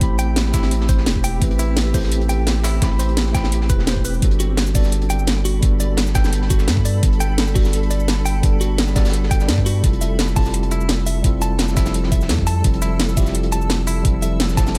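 Driven by a straight 4/4 pulse at 171 BPM, this liquid drum and bass excerpt in G major rolls forward on a knocking electronic kick, a drum and bass kit with a cracking snare, metallic hats and shaker, and a dark, gritty breakbeat kit with a high-tuned snare tucked in the background behind high-pass filtering. Underneath, a thick, saturated sine sub bass sits up front, deep and sustained. A mellow tine electric piano carries the accompaniment through dub echo, while a shimmering, ethereal pad with an octave-up sparkle, chorus and sidechain pumping breathes softly in the background. A bright, twangy clean electric guitar, recorded direct and picked, spins arpeggios from 0.2 seconds through spring reverb and dub echo. The chords move from Am9 to Gmaj9 at 4.2 seconds and on to Fmaj7 at 9.8 seconds, giving the lush, warm mood a gently drifting harmonic color in a dry, close mix.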